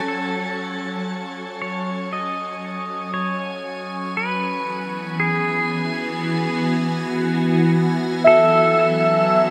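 Ambient and reflective, this spacious excerpt from a longer piece sets a bright, morphing wavetable pad with ensemble chorus and phaser beneath a twangy, clean pedal steel guitar melody played with slide and volume swells, both fading in from 0.1 seconds over an F#m, E and F#m7 progression, while muted, felt-like synth keys in a dark, warbling tone return with chorus and delay on arpeggios at 8.2 seconds, all bathed in a wet shimmer reverb.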